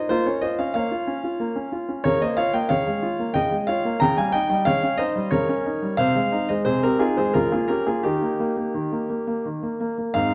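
A baby grand piano plays alone from the start, its natural, long-sustaining tone placed up front in this playful, cheerful fragment of a classical-period sonatina in 3/4, moving with rubato at 85-94 BPM and tuned to A4 = 436 Hz. Spanning Ab2 to Bb5, the harmony moves from Bbm through Bbm7/Db, Ab/C and Bbm/Db before arriving on Eb near 8.1 seconds. A recital hall's wet reverb, with a 1.5-second decay, surrounds the piano in a dark, warm production until it ends at 10.3 seconds.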